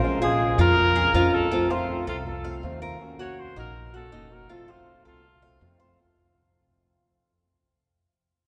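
Danceable and nostalgic, this short Latin fragment, cut from a longer piece, moves at 161 BPM in straight 4/4 over a Bbm7, F7, Ebm7, F7 progression, with a fade-out running through its full 6 seconds. A punchy, vintage trumpet with vibrato carries the melody up front from 0.2 seconds, while a Cuban tres spins metallic, double-strung arpeggios and a fingerpicked archtop guitar, finger squeaks audible, supplies accompaniment. A woody, growly pizzicato upright bass enters at 0.6 seconds near the front, and the whole ensemble sits in a wet cathedral reverb that suggests a church or concert hall.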